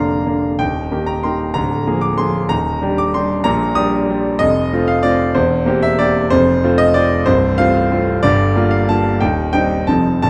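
A clear concert grand piano sits up front in a moderate recital hall, its natural tone ringing into a reverb of about 1.4 seconds. This is a short classical piano waltz in 3/4, cut from a longer piece, with an elegant, sparkling mood and a rubato feel that moves between 168 and 201 BPM. The solo piano spans from a deep bass Bb0 up to Eb6 across the full 10.3 seconds, tuned to A4 = 438 Hz. The harmony opens on Bb and Eb, passes through Bb7/D and Ebmaj7, then turns toward F with a C7/E along the way. Near the close it moves through Gm7 and Cm/Eb before landing on F7 at 9.9 seconds, leaving the phrase poised to continue.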